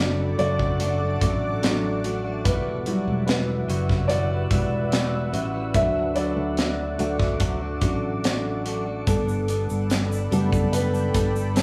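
A soft, thick-felted upright piano leads this hopeful, emotional pop ballad from the first moment, its mellow, intimate solo carried over round, punchy fingered electric bass and bright, compressed clean electric guitar arpeggios, while a shimmering, ethereal pad with chorus and its own reverb holds sustained chords high above, an up-front acoustic drum kit with a high-tuned snare and rolled-off top enters at 0.4 seconds, a grainy egg shaker joins faintly at 9.1 seconds, and the whole band sounds as if playing live in one room inside a moderate, large studio space.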